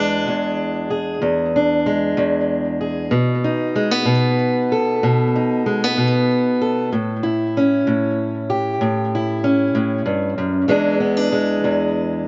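A fingerpicked steel-string acoustic guitar opens this short blues fragment alone and carries it for its full 12.3 seconds, soulful and laid-back at 63 BPM in a 12/8 metre with a straight feel. Set in E mixolydian, the guitar ranges from E2 up to A4, moving from E7 to B7 at 3.1 seconds, then A7 at 6.9 seconds, before landing back on E7. Its tone is bright and boxy, with the fresh-string snap and small-bodied character of a parlour instrument, and finger squeak comes through as the hand moves along the neck. A tape echo trails behind the notes, and the guitar sits up front in a modest booth ambience with a short decay. The sound is rolled off at the top, giving the recording a rounded, intimate quality, and the passage is cut from a longer piece.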